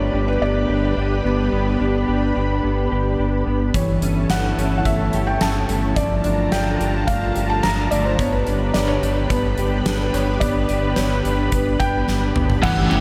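Dream pop at 108 BPM in G lydian, this short excerpt cut from a longer piece feels dreamy and floating, its whole mix soaked in a huge ambient reverb. A felt-muted upright piano carries the melody with a soft, intimate tone and audible action noise, trailed by a diffuse ambient delay. Beneath it a vintage string machine voiced as cellos holds slow-attack sawtooth chords with ensemble chorus, while a dark, clean, fingered electric guitar plays chorused arpeggios and a deep sine sub bass sits up front on G. At 3.7 seconds a huge arena drum kit enters with a punchy kick, fat snare and bright cymbals, and a drum fill leads into a brief burst of picked, overdriven electric guitar with tremolo at 12.6 seconds. The harmony drifts from G through A/G and Bbmaj7/G before returning to G.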